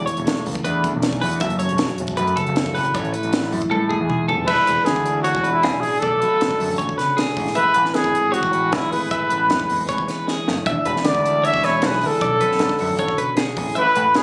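Wistful yet bright, this short cut from a longer math rock and midwest emo piece moves at 155 BPM in a straight 4/4 in A major. Two clean, compressed twelve-string electric guitars ring out from the start, one picking low accompaniment while the other spins chiming arpeggios up high with a twangy edge. Beneath them a growling picked electric bass adds overdriven grit, and a crisp, airy fusion drum kit with a high-tuned snare and tight kick pushes along, with fills at 3.7 and 10.3 seconds. At 4.5 seconds a breathy, close-miked trumpet enters up front with a soft attack, gentle vibrato and a slapback echo, carrying an intimate, whispered melody over jazzy seventh and ninth chords. The whole performance sounds as if captured on a phone in the room, with a light club reverb around the players.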